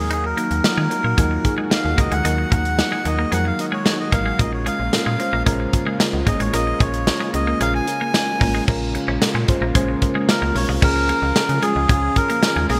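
A reedy, breathy melodica carries the lead up front from the opening second over a round, warbling FM electric piano, a thick detuned sawtooth pad, a twangy chorused twelve-string electric guitar riff and a snappy, metallic FM bass, while a punchy studio drum kit with gated reverb on kick, snare, hi-hat, crash and tambourine joins at 0.1 s, giving this nostalgic, romantic 1980s-style pop excerpt at 112 BPM a bright digital sheen in a lush hall as the harmony moves from Ebm to Bbm7 and settles on Db at 10.8 s.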